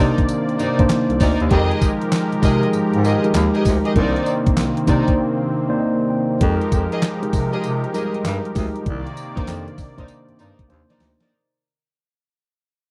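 Swung sixteenths drive this bouncy, punchy new jack swing cut from a longer piece, where a gated 80s drum machine with a thumpy kick, overdriven gated-reverb snare, handclaps, hi-hat and tambourine sits up front beside a mellow tine electric piano, while a clear bass clarinet plays scooped, vibrato-tinged jazz bass lines under lush bowed string stabs and a brassy, detuned analog pad with chorus, all moving through Cm9 and Fm11 in a dry, close studio sound, with a break at 5.2 s, an electric piano fill at 5.5 s and a fade-out from 6.4 s.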